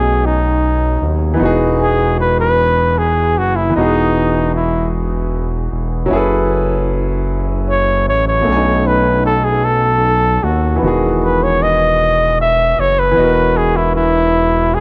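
Slow R&B in a straight 6/8 at 51 beats per minute, this tender, sensual passage in E major is cut from a longer piece. A breathy flugelhorn carries the melody as a solo throughout the 14.8 seconds, its whispered, intimate tone softened by a light vibrato, a soft attack and a smooth top, and it sits up front in the mix. Beneath it, a clear concert grand piano supplies the accompaniment with a natural sound and deep low end, moving through lush extended chords from B13 to Emaj9, then F#m11 at 6.1 seconds before returning to B13 and Emaj9. A smooth gliding synth bass, built from detuned sawtooth and square waves, holds the bottom with sustained, mellow notes, fast attacks and portamento slides, also placed up front. Light reverb and a small-room ambience give the performance a close intimacy.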